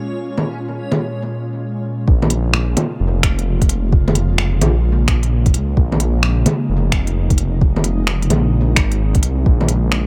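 Future garage with a ghostly, melancholic mood and a swung groove, this echo-heavy excerpt opens on an ethereal, mellow pad in the background, coloured by ensemble chorus, reverb and gritty 12-bit sampler character and pumping under sidechain, while a reversed, granular texture swells brightly above it until 2.1 seconds. Up front, organic electronic drums of bongos, finger snaps and crisp hi-hats run through analog delay, and at 2.1 seconds a deep, rumbling detuned saw bass, saturated and beating, arrives alongside a soft electronic kick, the kick and kit both re-recorded in a small room. The harmony holds on Bbm7 before shifting to Dbadd9 at 9.5 seconds.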